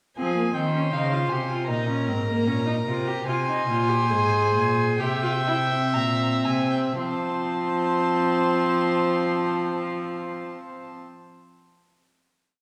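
Solemn and serious, this short, complete baroque-style fugue for string quartet unfolds in F minor at a slowing tempo of 55-81 BPM, with two dark, nasal violins carrying the melody and a second line while a rich viola and an up-front cello with light vibrato supply accompaniment and bass. All four gut-string players bow period-style lines of imitative counterpoint with a reedy edge, the upper three sounding distant within the reverberant space of a church or concert hall. The exposition moves from Fm through Bbm and C7 before settling at 7.0 seconds on a sustained F major final chord.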